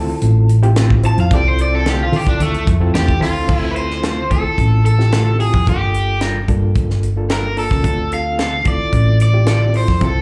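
A bright, picked overdriven electric guitar solos from the very start over a gritty reed electric piano with fast tremolo and a round, punchy hollow-body bass, opening a smoky, soulful straight-eighth soul blues at 110 BPM in D minor, as a tight funk kit with a high-tuned snare joins, a clean, fingered guitar with lush chorus adds stabs, slapback echo trails both guitars and the piano, and a distant bowed chamber string section slips in behind from 1.3 to 2.1 seconds, the band heard live through a club PA while the harmony moves from Dm7 to Gm7 at 5.7 seconds and back.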